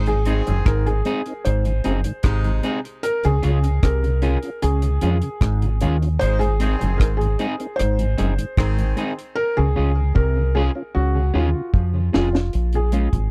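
Opening together, a warm horn section with light vibrato and tape echo, an overdriven, stringy clav riff through a phaser and a deep, round, punchy fingered electric bass set up a hypnotic, meditative roots reggae groove at 76 BPM in 4/4, soon joined by a soft, felt-muted upright piano melody with tape echo, a mellow tonewheel organ with chorus vibrato and slow rotary speaker sitting in the background, a dry reggae drum kit with high-tuned snare, tight kick and rim clicks up front, and a dark, slightly broken-up electric guitar. The horns drop out at 9.1 s ahead of a drum fill from 9.4 s, all over alternating Ab and Db chords, captured in a close 1970s-style studio sound.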